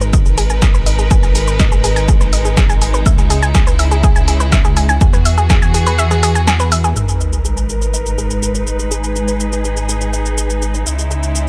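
Melodic techno at 123 BPM in G# minor, this dramatic, driving cut from a longer piece moves in a straight 4/4 over chords of G#madd9, C#madd9 and E. A clear, lush studio string section holds sustained chords under a low-pass filter, while a round, nasal analog pluck spins arpeggios through chorus and analog delay, a filter sweep moving on it over the first 7.0 seconds. A dark detuned saw bass rumbles and beats beneath, and the strings, pluck and bass all pump against the sidechain. A punchy analog drum machine keeps hi-hat, shaker and snare running throughout, while an up-front, tape-tinged electronic kick drives the groove until 5.6 seconds, falling away before a band accent at 6.5 seconds. At 7.0 seconds an impact and a sub drop in the background mark the new section, where a filter sweep moves across the strings, all set in digital ambience with a dry, gritty hardware character.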